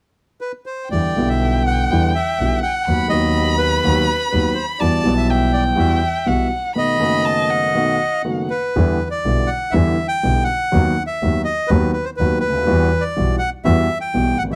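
Sultry and tense, this tango fragment moves with a rubato feel in four. A reedy, bright bandoneon carries the melody from 0.4 seconds, sounding dry, full and up front. At 0.9 seconds the rest of the ensemble arrives: a bowed violin adds an expressive second line with vibrato, portamento and a smooth top until 8.5 seconds, while an intimate, woody upright piano supplies polished accompaniment with long sustain and audible action noise. Beneath them a bowed double bass sounds earthy and slightly distant, its tone clear with a light vibrato. The harmony circles through Em7, B/D#, Emadd9 and B7, then returns to Em7, B/D# and Emadd9 for a second section after the violin drops away. Close, detailed microphones and light reverb keep the sound detailed and present.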